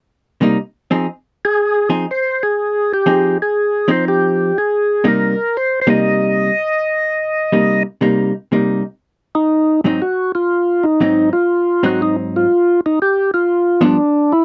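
A dark, compressed hollow-body jazz guitar opens this bluesy, late-night swing jazz excerpt at 0.4 s with clean picked accompaniment in C minor at 121 BPM, before a full, percussive tonewheel organ enters up front at 1.4 s to carry the melody with key click, second harmonic percussion and a slow rotary speaker, over Cm7, Fm7 and Ab7 harmony that arrives at G7, all captured in a dry, close 1970s-style studio sound touched with light reverb.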